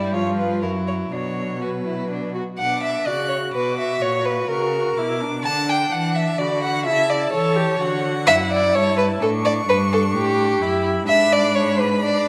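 Graceful and cheerful, this quick classical-period string quartet movement in 3/4 at 126 BPM moves from B minor to D major at 8.3 seconds, with a warm first violin singing the melody with vibrato and portamento, a rich, up-front second violin carrying a smooth, even second line, a distant viola filling in accompaniment, and an expressive cello anchoring the bass with its own portamento, all bowed by single players in a moderate recital hall reverb.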